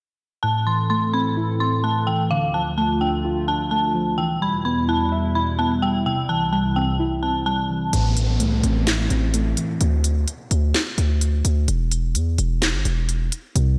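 A dark, detuned synth bell carries the melody up front from 0.4 seconds, its inharmonic FM tone shimmering with chorus and tremolo over an eerie, brooding trap piece in A minor at 128 BPM with a half-time feel. Beneath it, muted felt-like synth keys give an intimate, soft accompaniment, and a hollow, flute-like pad holds airy, mellow chords through Am, Dm, Em and C. At 7.9 seconds the bell and pad fall away as a heavy, aggressive distorted 808-style bass and an electronic trap kit with a sharp snare, crisp hi-hats and handclaps push forward, while a faint downlifter sweeps beneath. The keys drop out at 9.8 seconds, where the harmony gives way to the bass, drums and downlifter, and they return briefly at 13.6 seconds. The whole mix is soaked in a lush hall reverb that lends it a dreamy haze, and the recording is cut from a longer piece.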